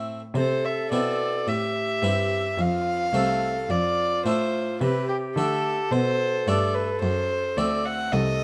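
Harpsichord and rich cello open this baroque-style sonata movement with continuo, the harpsichord plucking a round, dry Italian-style accompaniment over the cello's gut-string bass. At 0.4 seconds the alto recorder and violin join, the recorder carrying the melody with a crisp, chiffy attack and airy vibrato, while the single violin sings a nasal, reedy second line that sits up front in the mix. The mood is radiant and dance-like, moving in a slow 3/4 at 54 BPM in C major with a flexible rubato feel. The harmony passes from C to F and Dm/F before reaching an F#dim7 at 7.0 seconds. Period-style bowing on both strings and a moderate large studio reverb lend the close, intimate playing a gently spacious glow, and the passage is cut from a longer piece.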